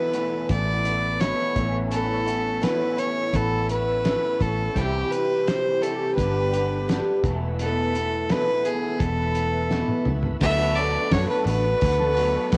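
A steady, straight 4/4 pulse at 85 BPM drives this short folk rock and heartland rock cut in A major, its jangly, nostalgic mood carried by a cloth-damped, thuddy drum kit whose muffled, dark cymbals, fat snare and tight kick sit in a small, lo-fi room, with a drum fill from 9.7 to 10.4 seconds. A round, foam-muted picked electric bass joins at 0.5 seconds, dark and up front beneath the band. The rich fiddle carries the melody with light vibrato and an airy, earthy bow, played close by one player and given a cassette tape tint. Beneath it, a boxy, shimmering twelve-string acoustic guitar picks octave-doubled accompaniment, while a bright, twangy, slightly broken-up electric guitar through a small old amp plays a riff coloured by ensemble chorus and cassette tape. A very quiet, lightly overdriven tonewheel organ holds full sustained chords through a slow rotary speaker, as the harmony moves from Esus4 through Aadd9, C and G, back to Esus4, before landing on D6 at 10.4 seconds, all in the moderate ambience of a home cassette recording.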